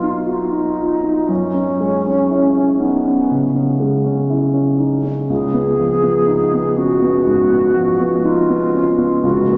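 An alto flute with a wooden head and a dark baby grand piano open together on a B chord, an impressionist classical duo drifting at a rubato 61 BPM in 4/4 with a dreamy, luminous mood. The airy flute sings the melody between B3 and G#4 with vibrato and soft attacks, while the mellow, vintage-toned piano accompanies from C#2 to F#4 with long sustain, moving to F#9sus4 at 1.3 seconds and C#9 at 5.3 seconds. Both instruments sit up front in a wet cathedral reverb with a 4.3-second tail and a rounded, softened top end, in this short passage cut from a longer piece.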